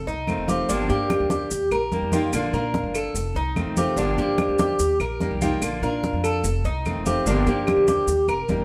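A relaxed, danceable Cuban son and guajira groove moves in a straight 4/4 at 146 BPM, cycling through F7, Gm7, Eb and Bb in Bb major in this short cut from a longer piece. Up front, the metallic, double-strung Cuban tres plays arpeggios beside a dark, picked steel-string acoustic guitar with audible finger squeak. Beneath them sit a thumpy pizzicato gut-string upright bass, bright soft-handed congas, grainy maracas and woody claves in the background, all within a large studio reverb, with a drum fill at 8.5 seconds.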